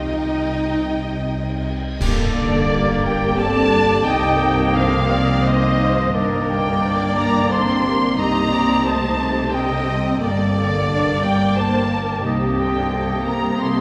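Drenched in the long, wet reverb of a church or concert hall, this sorrowful, bittersweet film-score passage in a rubato three-time sways between minor chords as a distant, dark violin section sings the expressive, vibrato-rich melody over a lush second violin line, close violas with portamento, a smooth cello section in the background and bowed double basses. At 2.0 seconds a close crash of clash cymbals and concert bass drum marks a full-orchestra accent, and a vintage-sounding oboe and a very quiet, roomy clarinet join with their own lines. From 2.3 seconds a pure, crisp silver flute drifts in from afar while a dark French horn section holds sustained chords beneath.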